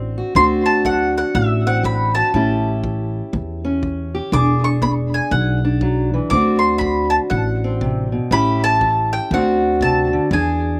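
Acoustic country blues with a gritty, swaggering mood, moving at 120 BPM in 4/4 with a swung eighth-note feel over dominant seventh chords on D7, A7 and E7. A mellow, woody mandolin carries the melody up front from 0.4 seconds with a slapback echo, while a dark, boxy parlour steel-string guitar fingerpicks the accompaniment and a growly, thumpy pizzicato upright bass anchors the low end. A punchy kick drum played with brushes sits in the background, and the dry outdoor sound keeps the whole group close and unadorned in this short cut from a longer piece.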